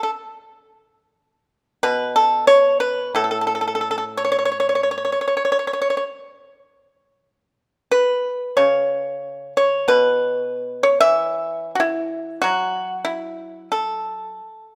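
Moving in a free, rubato 4/4 that hovers around 84-96 BPM, this elegant, pastoral passage of Chinese traditional music sits in an A gong mode and is cut from a longer piece. A solo pipa, played with fingerpicks, carries the whole 14.8 seconds, ranging from A2 up to E5 with a dry, percussive attack. It sits up front in a lightly reverberant room.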